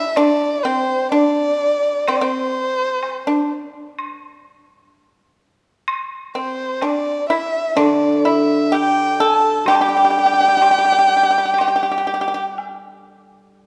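Graceful and festive, this excerpt of Chinese traditional chamber music moves at an unhurried 63 BPM in 4/4 and G zhi mode, with a dark, woody erhu singing the melody up front with vibrato and portamento, a dry, percussive fingerpicked pipa carrying a second line beside it, a bright woodblock ticking in the background, and a shimmering, ringing hammered dulcimer joining at 7.8 seconds, all set in a wet concert hall reverb.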